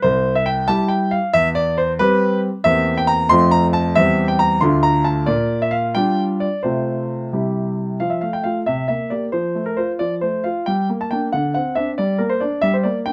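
Playful and graceful, this short cut from a classical-period piano sonatina in a straight 6/8 features a clear, polished concert grand playing solo, up front with a deep bass, in a dark production with light reverb as it moves from its opening section into a second section at 8.0 seconds that touches on minor colours.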